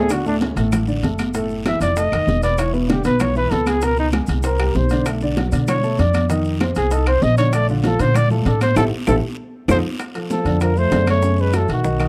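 A dark trumpet with light vibrato and scooped notes solos up front in this sunny, lively Afro-Cuban jazz excerpt at 194 BPM, over woody pizzicato upright bass, a mellow baby grand piano with audible action noise, ringing timbales, bright high-tuned congas, round low-tuned bongos, raspy guiro, grainy maracas and claves, with a band accent and drum fill before a growling, bucket-muted trombone enters in the background at 10.3 seconds, all in a dry, close 1970s-style studio sound.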